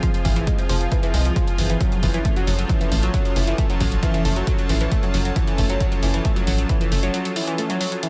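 A punchy, up-front electronic kick and an electronic hi-hat open this dark, industrial peak-time techno cut alongside a nasal, detuned analog pluck riff soaked in chorus, phaser, overdrive and tape echo, a swarming, evolving drone hovering in the background, and an airy, breathy pad, all three pumping against the kick, before a tight, saturated sawtooth sequencer bass with ring modulation drives in at 0.2 seconds, the kick dropping out at 6.8 seconds and the bass at 7.1 seconds as a brief break closes the excerpt in light reverb.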